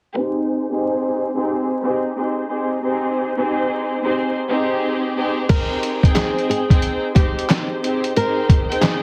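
Boom-bap hip-hop at 90 BPM in Ab major, warm and nostalgic, this excerpt opens on an Abmaj7 chord from a dark, woody symphonic string section with lush bowed vibrato, cassette-tape colour and a filter sweep across its first 5.5 seconds. At 5.5 seconds a pitched-down, muffled sampler-style drum kit arrives with a thumpy kick, medium-tuned snare, hi-hat, handclaps and crash cymbal, joined by a fingerpicked flamenco guitar melody with fresh strings, audible finger squeak and slapback echo. The whole mix sits in a small room with heavily compressed radio-like sound and vinyl crackle.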